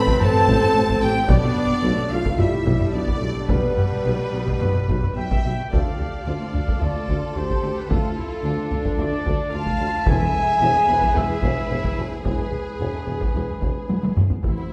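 Close, up-front taiko drums struck with hard sticks drive this heroic, dark cinematic excerpt from the start, under a full orchestra: a lush, expressive violin section sings the vibrato melody over a second violin line in the background, with a focused viola section, distant soft-attack trumpet stabs, a warm French horn section and a clear, very quiet trombone section holding sustained chords. A hollow, mellow flute section adds a faint second line until 5.4 seconds, while smooth cellos, very quiet double basses and a roomy tuba anchor the bass. Timpani with calf heads join at 10.1 seconds, and a drum fill near 13.9 seconds rounds off the passage in a reverberant concert-hall space.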